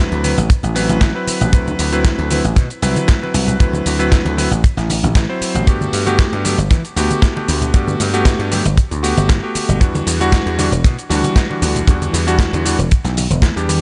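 Nu-disco with a sunny, feel-good mood, this short clip from a longer piece rides a lightly swung groove in four. A dry, tight acoustic kick sits up front, joined by a dusty soul sampler-style kit whose gritty, overdriven hi-hat, shaker, medium-tuned snare and toms sound compressed and studio-reverberant. A punchy, foam-muted thumbed slap bass, bright and direct, holds the low end up front, while very quiet congas played with soft hands add warm, saturated colour underneath. A clear vintage electric grand piano with clangy lows and long sustain carries the accompaniment, breathing with a sidechain pump and trailed by a digital delay. The harmony moves from D13 to Gmaj9 at 5.7 seconds and Em9 at 9.8 seconds, all within a mellow top end that never gets harsh.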